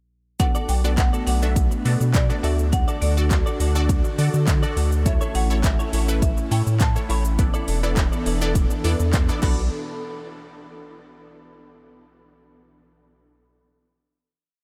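A punchy, up-front pop drum kit drives this short, confident dance-pop piece at 103 BPM in B minor, its four-on-the-floor beat of kick, metallic hats, shaker, handclaps and crash joined by a deep, round analog bass playing off-beat lines with sidechain pumping and a faint group handclap on the backbeat from 1.0 seconds. Over the Bm7, D, A and E7sus4 changes, a detuned sawtooth unison pluck stabs syncopated chords through a phaser, an airy, breathy pad sustains warbling chorused chords, and a clean, direct-recorded electric guitar plays a choppy funk-style riff with ensemble chorus. A woody, hard-mallet marimba sits in the background with short call phrases in a diffuse ambient delay, and the full groove ends at 9.7 seconds on a final hit under light reverb.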